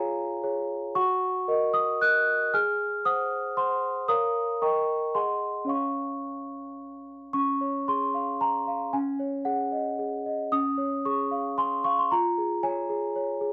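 Classical lullaby in Db major at 114 BPM in a straight 3/4: a tender, innocent passage cut from a longer piece, in which a solo celesta with a bell-like, delicate sweetness sits up front and plays from Db4 to Gb6 over a gently shifting harmony that settles home on Db, its airy tone softened by cassette tape and light reverb in a dull-topped home recording with a faint mains hum beneath, while the same phrase returns at 7.3 seconds.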